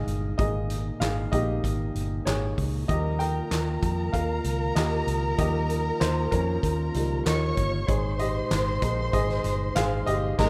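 Piano-driven pop at 96 BPM in Ab major, this uplifting, warm fragment is led by an intimate baby grand with audible action noise and short sustain, over a soft, flute-like tonewheel organ holding chords through a fast rotary speaker with key click, a dark, foam-muted electric bass sitting round and up front, and a loose acoustic drum kit with a punchy kick, fat snare, dark cymbals, hi-hat, crash and handclaps in a pumping room, while a close, expressive bowed violin section with vibrato enters at 2.9 s as the harmony moves from Absus2 to Ebadd9 and back, captured in a rough home-demo mix with light reverb.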